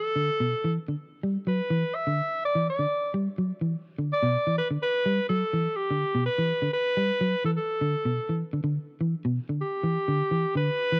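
Afrobeat with a defiant, driving feel, cut from a longer piece, sets a bright, punchy alto saxophone solo with light vibrato up front over dark, slightly broken-up fingered electric guitar arpeggios from 0.2 seconds, all captured in a dry, close 1970s-style studio sound.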